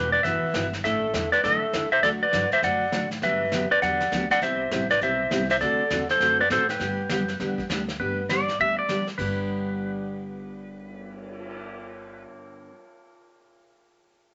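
Cheerful and playful, this short western swing excerpt in G major moves at a brisk 201 BPM with a swung feel, led by a bright, twangy clean lap steel guitar that sits up front with slide and volume swells. Beneath it, a full-bodied picked steel-string acoustic guitar picks out the chords, a woody pizzicato upright bass anchors the low end, and a vintage brush drum kit with a punchy kick and rolled-off top enters at 0.2 seconds. The whole band sits in a moderate club reverb with a gently dulled high end, moving through a progression from Emadd9 through Gmaj7 and D7 before resolving on G.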